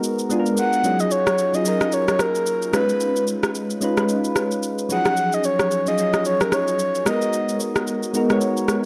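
An electronic shaker and rim click set a swung amapiano groove at 111 BPM in 4/4, sitting up front in a dry, gritty mix with light digital ambience, in this soulful, deep passage in Eb minor cut from a longer piece. Round, mellow electric-piano-like synth keys with chorus and phaser carry chords moving from Bb7b9 through Ebm11 and Db9 to Abm9. From 0.6 s to 7.6 s, a breathy, flute-like synth lead sings the melody with a sustained tone, vibrato, a sub-octave layer, chorus and tape echo.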